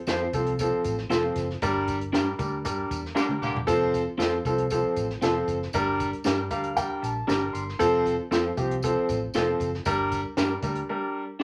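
Piano, guitar, bass, drums and tambourine start together at the top of this uplifting, uptempo 1960s-style soul excerpt in F major at 117 BPM, with a clear, up-front concert grand carrying the accompaniment over a round, foam-muted fingered bass, slightly broken-up guitar stabs from a small old amp, a compact cocktail kit with a high-tuned snare and tight kick, and a jingly tambourine sitting in the background. The band hits accents as the harmony moves between F and Gm, a drum fill at 3.2 seconds coincides with a brief, punchy burst from a tight horn section, and the piano takes a fill at 6.3 seconds. Moderate studio reverb lends the dry drums a little space before a short break at 10.9 seconds, where the horns return to close the cut.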